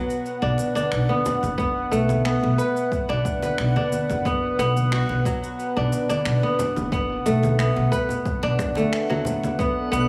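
Light reverb and a small-room ambience give this short excerpt of organic downtempo an intimate, close-up sound with a mystical, warm mood over a steady, straight four-beat pulse. Up front, a crisp, ringing, fingerpicked kora plays arpeggios through digital delay, resting on a smooth, dark analog pad that sustains a Bm7 chord with chorus and sidechain pumping. A layered, overdriven bed of electronic cabasa, finger snaps and congas starts at 0.1 seconds, and a woody, thumpy pizzicato upright bass enters at 0.4 seconds, while acoustic congas, struck with hard hands, sit in the background. A punchy, overdriven electronic kick drum joins at 1.6 seconds. At 9.7 seconds, a faint twinkling granular texture with an octave-up shimmer appears in the background, carrying its own built-in reverb.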